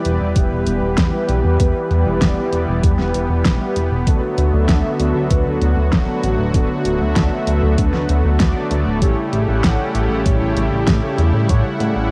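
Synthwave at 97 BPM in a nostalgic, moody mood, this short cut from a longer piece moves from Em to D6 at 4.1 seconds and A7 at 9.0 seconds. A smooth, detuned supersaw holds sustained chords with sidechain pumping, while dark, brassy synth stabs with chorus, vibrato and analog delay sit above a glossy, nasal pulse-wave bass given tube saturation. An overdriven knocking kick, fat snare and hi-hats drive the beat, and tape coloring on the supersaw, brass stabs and drums, plus light reverb, gives it a homemade cassette character.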